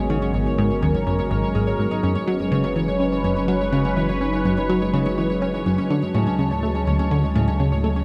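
A punchy, funky analog bass riff built from sawtooth and square waves with a filter pluck and moving notch drives this cosmic, expansive stretch of ambient, sequencer-driven space music at 124 BPM in 4/4, its notes echoing through analog delay. Up front, a bright, detuned resonant pad with a filter swell, a slow attack and chorus sustains chords moving from G#m7 to F#sus4 and then D at 5.9 seconds. Ringing, fingerpicked Celtic harp arpeggios through their own analog delay, a deep, round sine sub bass and a pulsing, tempo-synced triangle texture on a high C#5 with chorus and built-in reverb all sit within a huge, wet reverb and a dark, warm production.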